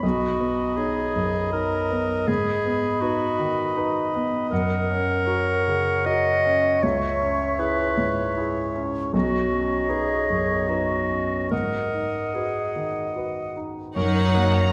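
Bittersweet and sorrowful, this cinematic film-score excerpt in G# minor drifts in a rubato 3/4 at around 72-82 BPM, with a clear, up-front grand piano sustaining its accompaniment beneath lines from a close-miked clarinet, a pure, crisp-attacked concert flute and a mellow cor anglais with light vibrato. At 14.0 s the full orchestra arrives: lush bowed violins take the melody from the background while a second violin line, violas, cellos and double basses add rich vibrato, and a tight French horn section sustains chords. A moderate scoring-stage reverb gives the ensemble its sense of space.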